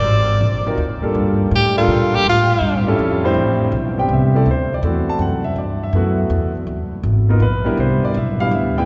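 A clear tenor saxophone with light vibrato and scooped notes opens this moody, late-night small-group swing-and-bop jazz fragment at 163 BPM in a swung 3/4, playing up front over a woody, growly pizzicato upright bass, until it stops at 2.8 s; an intimate grand piano with audible action noise and long sustain, which joined at 0.7 s, then carries on with the bass into A minor from 3.4 s, through chords such as Am11, D7, Gmaj13 and Cmaj9, all of it set in a wet cathedral reverb with a dark, rolled-off top.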